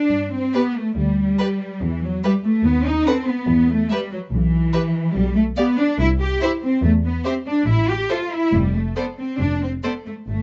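Cheerful and spirited, this brief cut from a longer classical-period movement for string orchestra moves at a quick 142 BPM in 4/4, though it is played with a flexible, rubato feel. Up front, a dark, woody cello section carries the bass line with lush vibrato from the very start, joined almost at once by a smooth, even double bass section sounding deep beneath it. At 0.5 seconds the upper strings enter: a violin section plays a close, intimate second line with a smooth top, while a distant viola section fills in the accompaniment with rich, steady tone. The melody belongs to another violin section, played sul tasto with light vibrato and a soft attack, and it sits gently in the background of the texture. The harmony travels from G through E minor and a B chord over D sharp, later passing through a brief stretch outside any defined chord before settling on D minor seventh over F. The sound is dry and close, with little reverb and a mellow, rounded top end.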